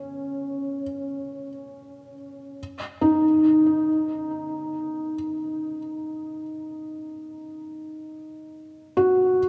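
Muffled by cassette tape that holds nothing above 10.5 kHz and steeped in a cathedral reverb with a 5.4-second decay, this weightless, luminous ambient fragment in free time features a solo felt-muted upright piano, intimate and dark with thick felt and audible action noise, sitting up front with delay, staying within C#4 to F#4 and shifting into a new section at 2.6 seconds.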